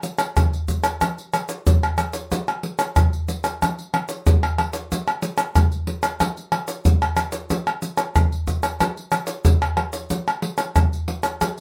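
A small, acoustic room sound with light reverb frames this short samba clip, which is cut from a longer piece and runs 11.6 seconds. A percussion group of tube shaker, pandeiro, tamborim and surdo plays throughout, placed up front in the mix with hard hands striking the skins. The surdo is tight, and the group moves at 92 BPM in 4/4 with a straight feel. The mood is sunny and joyful, carried entirely by the combined textures of the drums and shaker. It plays as a single unbroken section, giving a compact, close-up snapshot of the ensemble's energy.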